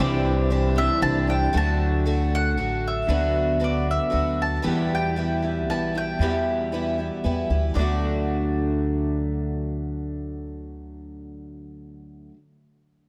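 Folk rock with a heartland rock lean, this excerpt moves at 116 BPM in a straight 3/4 in D major, carrying an open-road, nostalgic mood. A woody, double-strung mandolin carries the melody in a high register, while a picked twelve-string acoustic guitar sits up front with a shimmering, octave-doubled accompaniment and audible finger squeak. An electric guitar through a small old amp plays a twangy, slightly broken-up riff bathed in lush chorus, and a thumpy pizzicato upright bass anchors the low end, also placed up front. A very quiet tonewheel organ, with key click and a slow rotary speaker, holds sustained chords only until 1.5 seconds, when the harmony moves from Cadd9 to D and then on through Bm/D and Em. The whole mix is dreamy and soaked in a church-like reverb, giving the acoustic strings a hazy, spacious glow.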